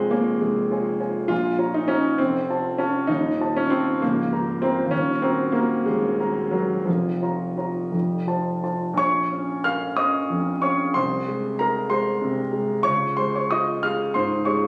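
Captured on a phone in a recital hall with moderate reverb and some compression, this brief classical romantic character piece for solo grand piano sounds intimate and up front, its natural tone carrying audible action noise as the rubato 6/8 music unfolds a passionate, bittersweet passage that moves into a new section at 9.0 seconds before the cut from the longer work.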